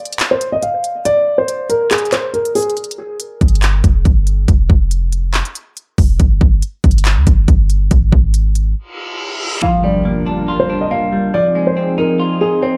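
Hard-hitting and eerie, this short cut from a longer hip hop track moves in a heavy trap half-time feel. A dark, intimate concert grand piano opens with a tape-echoed melody, its action noise audible and its tone slightly boxy, while an up-front electronic trap kit of hard-clipped kick, crisp hi-hats and handclaps drives the groove. At 3.4 seconds a clean, sine-based 808 bass enters, deep and boomy with a fast attack that decays under the drums. A reverse cymbal leads into an electronic impact at 9.6 seconds, where the piano returns alongside a compressed, scooped semi-hollow electric guitar and a smooth, evolving analog pad of detuned sawtooth tones treated with chorus. The harmony shifts from Fsus2 and G5 in the opening half to Gm7 and Fm7 at the close, all within a dry, dark production.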